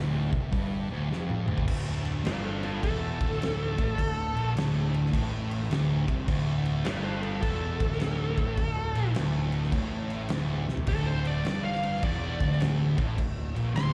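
A thick, double-tracked fuzz guitar riff opens this ominous stoner and doom metal excerpt in D minor, sitting low and up front alongside a growly, overdriven picked bass with a bright, punchy edge. Moments later the big rock drum kit comes in, dark and smooth with a fat snare and a punchy kick, and a drum fill at 1.1 seconds leads into the main stretch. At 1.7 seconds the harmony settles from D minor onto a D power chord, and shortly after a fuzz lead guitar takes a solo, its compressed, distorted tone given depth by tape echo. The groove moves at 104 BPM in 4/4 with a moderate swing on the eighth notes, and another drum fill lands at 10.6 seconds. The whole performance comes across as a live club gig heard through the venue's PA, wrapped in small-room ambience and club reverb.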